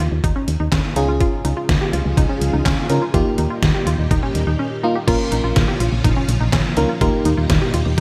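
Cool and melancholic, this 124 BPM synth-pop excerpt sets a thumpy, tape-warm 8-bit drum machine with gated reverb and a punchy, dark FM bass under a round sawtooth pluck arpeggio with chorus and delay, while a glassy, bell-like FM electric piano enters at 1.0 seconds and a lush vintage string machine at 1.2 seconds, the harmony moving from Db to Eb in a bright 1980s-style digital production.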